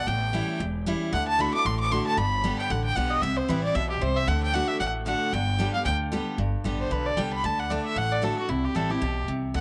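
A lively, joyful bluegrass tune in G major bursts in at once, with fiddle, guitar and upright bass all sounding from the first moment of this brief cut from a longer piece. The fiddle leads with a solo through 6.4 seconds, its single bowed line rich and biting with a nasal, earthy edge, light vibrato and an airy bow, set up front. Beside it, the picked steel-string acoustic guitar keeps up bright, full-bodied accompaniment, also up front, with a touch of finger squeak. The upright bass supplies a woody, thumpy pizzicato foundation down low. At a brisk 228 BPM in 4/4 with a light swing on the eighth notes, the music moves into a new section at 6.4 seconds, the chords cycling through A7, D, G and C, and the whole performance rings in a moderate spring reverb.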